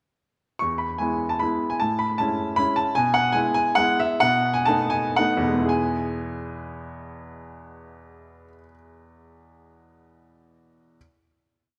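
A clear upright piano carries this short classical waltz alone, its woody, vintage tone sitting up front with a short sustain. The mood is sparkling and graceful, shaped by a free, rubato feel in a lilting 3/4. A single-line melody floats above a waltz bass, the piano spanning E2 up to C#6 as it moves through E, Amaj7, E/B and B7 before resolving home to E. From 2.4 seconds the pace slows, easing into a final chord that arrives at 5.7 seconds and rings until 8.8 seconds. A moderate scoring-stage reverb surrounds the piano, and the dark, warm production gives this complete little piece a rounded glow.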